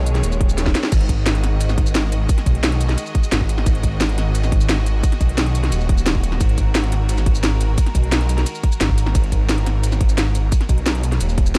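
A straight 4/4 pulse at 175 BPM drives this dark, technical drum and bass piece in G# minor, cut from a longer track and built on a G#5 chord. A tight, up-front electronic kick sits beside a layered kit of cracking snare, crisp hats, ride, crash and shaker, both carrying a studio reverb and a tape-like glow, with a brief drum fill from 0.6 to 0.9 seconds. The snarling, distorted saw bass fills the low end, a growling, detuned blend of sawtooth, square and sine tones with a fast attack, compression, overdrive and a moving notch. Behind it, a clear, bowed string section holds sustained chords from a distant position, its light vibrato and biting intensity pumping against the sidechain. The dark digital ambience gives the whole stretch an aggressive, tense character.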